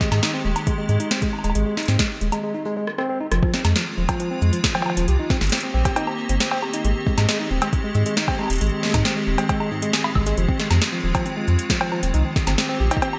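Glitchy and intricate, this IDM excerpt sets bright, clean tine electric piano arpeggios with digital delay and a filter sweep over an icy, crystalline glass pad with chorus, while an overdriven, booming analog drum machine with crisp snare, metallic hats, cowbell, woodblock and gated reverb sits up front with a round sine sub bass, joined by a deep electronic kick, pausing for a break and drum fill before the shift at 3.3 seconds, all within a lush, 1980s-style digital hall and cycling through Abmaj7, Fm7 and Cm7.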